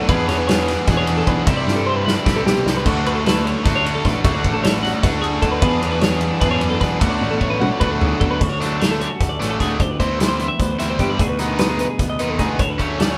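Math rock and midwest emo in a straight 7/8 at 303 BPM counted in eighths, this short excerpt sits in D lydian with a playful, wistful mood, a band playing live in one room with moderate studio reverb. Two clean, picked twelve-string electric guitars carry the harmony: one bright and twangy with chordal accompaniment, the other warm and tucked into the background, spinning arpeggios high up. Up front, a biting, double-tracked overdriven guitar drives the riff, while a round fuzz bass with overdrive anchors the low end. The loose indie drum kit is roomy and distant yet sits forward in the mix, with dark cymbals, a medium-tuned snare and a tight kick under a rolled-off top, and it breaks into fills at 1.7 and 7.2 seconds. The chords drift through E7, C69 and Dmaj7 before the second section at 8.4 seconds moves over a D pedal through Cmaj9/D, G#m7/D and F#m/D, lending the passage a floating, unresolved feel.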